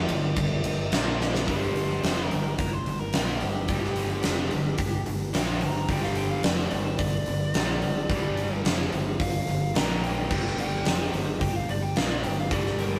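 A huge, up-front arena drum kit with bright cymbals, a fat snare and a punchy kick drives this heavy hard rock excerpt, where a biting lead guitar solos from 1.5 seconds over sludgy double-tracked distorted guitar riffs, two overdriven semi-hollow guitars sitting back in the mix, a growly, bright fingered bass and a very quiet tonewheel organ with slow rotary swirl holding chords at the start and again from 10.3 seconds, all in a rough rehearsal-room sound.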